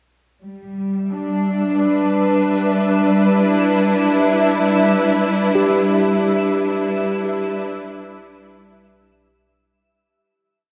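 Floating in free time, this short, complete ambient piece in G major feels luminous and weightless, resting on a single G6 chord. From 0.4 s a muted studio string section sits up front, bowed con sordino with vibrato, its dark, veiled ensemble tone holding slowly shifting chords, while a very quiet analog drone hums beneath with a mellow, warbling, detuned, chorused sawtooth-and-pulse character. At 1.6 s a twinkling granular texture fades in on a held high E5, adding sparkling octave-up shimmer through its own reverb. At 5.6 s a clean tine electric piano scatters arpeggiated notes through a combo amp, colored by medium tremolo and tape echo. An enormous, wet ambient reverb and a cassette-tape grain surround the whole recording as it fades out.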